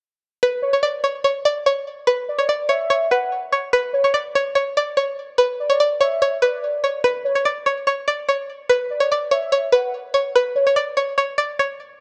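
A twangy, string-like resonator pluck opens at 0.4 s, carrying the melody between B4 and D5 with a fast attack and decaying notes. Its sawtooth tone and noise layer move through a filter sweep, and it sits bright and up front with chorus and phaser. At 0.6 s a velvety synth lead joins as a second line from C#5 to F#5; its detuned unison of sawtooth and triangle tones is sustained and mellow, shaded with chorus, delay and vibrato, and it stays in the background. The passage is eerie hip hop at 145 BPM in 4/4 with a half-time feel, tuned to A4 = 441 Hz. A moderate recital hall reverb with a 1.8 s decay lends depth, and the production leans dark and warm. The lead stops at 10.8 s while the pluck carries on until 12.0 s, in this fragment cut from a longer piece.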